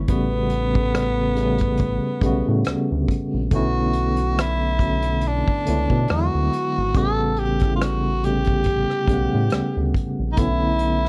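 Worn, warbling cassette-tape sound with light reverb frames this late-night, soulful R&B and neo-soul fragment at 70 BPM with a gentle 16th-note swing, where a raspy, growling tenor saxophone carries the melody up front over a slightly out-of-tune tine electric piano with medium tremolo through a combo amp, a round, deep analog bass, and an acoustic small-room drum kit of hi-hat, tight kick and rim click played with bundle sticks, all moving through A13, Bm11 and E9 chords.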